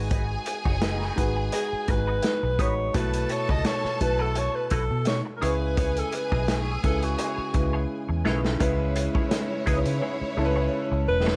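Bittersweet and smooth, this short excerpt of lush 1970s-style soul moves at 85 BPM in 4/4 with a gentle sixteenth-note swing, its harmony moving from G#m7 through B7sus4 to C#m7. A vintage drum kit sits up front with a muffled, rolled-off sound, a tight kick and a medium-tuned snare, adding fills around 7.9 seconds and again from 10.0 seconds. Beneath it, a dark, foam-muted fingered electric bass gives a round, punchy low end, while a clear concert grand piano supplies natural-sounding accompaniment with deep bass notes. A bright, twangy electric guitar picks a compressed riff in the background, colored by wah and an ensemble chorus, and a distant string section adds a lush bowed second line with vibrato and portamento. At 1.5 seconds a warm, roomy alto saxophone enters with a pop-style solo melody, its vibrato carried by slapback echo, all within light reverb and small room ambience.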